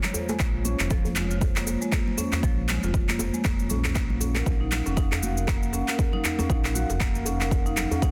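A dark, detuned analog pad with chorus and phaser opens this spiritual, earthy afro house excerpt in Bb minor at 118 BPM, alongside hard-mallet marimba arpeggios softened by a low-pass filter and digital delay, electronic handclaps and cabasa, and high-tuned congas played with soft hands in the background. A cracking djembe with metal rattles joins almost at once, and at 0.4 s a round, deep analog bass arrives with an overdriven, layered electronic kick drum up front, the pad, marimba and bass all pumping to the sidechain. Over a swung 16th-note feel, the chords move from Bbm to Ebm7 in a dense, heavily limited modern master.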